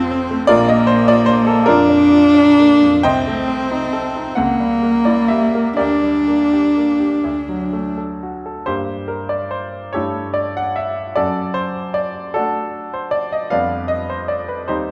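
Yearning and elegiac, this excerpt from a longer romantic piece for cello and grand piano unfolds in G minor at a slow, rubato 6/8, moving at roughly 40-53 BPM in dotted quarters. The solo cello carries the melody in a narrow span from Bb3 to D4, its bowed tone warm and intimate, with light vibrato, a soft attack and an airy quality, placed close and up front. The grand piano accompanies with a clear, present sound and short sustain, also up front, ranging from deep Bb1 up to G5. The harmony darkens through diminished chords such as Adim/C and C#dim7 before settling on Gm/D and D. The cello falls silent at 7.9 seconds, leaving the piano alone to continue through Gm, D/F# and a closing G7/F until 14.9 seconds. A recital hall reverb bathes the duo in a dark, resonant space.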